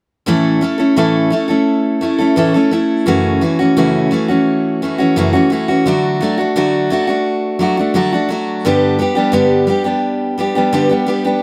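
Easy-going and sunny, this short pop excerpt moves at 86 BPM in a straight 4/4, set in A mixolydian with the tuning pitched at A4 = 443 Hz. A lone picked steel-string acoustic guitar plays from 0.3 to 11.4 seconds, its bright, full-bodied jumbo tone sitting up front with light reverb. It moves through A, F#m7, D and G, with each chord lasting a little under three seconds.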